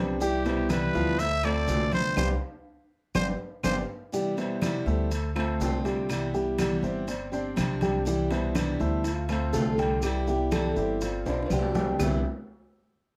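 A relaxed Cuban son and guajira groove opens on bright, full-bodied picked steel-string acoustic guitar, grand piano arpeggios and a dark, thumpy pizzicato upright bass up front. Congas, maracas, timbales and claves join almost at once in a roomy, reverberant ambience, and a raspy, growling trumpet carries the melody with light vibrato until 3.8 seconds, punctuated by a band accent and a drum fill, as the chords cycle through Cmaj9, Dm7 and G7sus4. At 8.1 seconds a thumb-plucked classical nylon-string guitar adds a second line, while the damped congas, grainy maracas, ringing metal-shell timbales and woody claves carry on to a final drum fill.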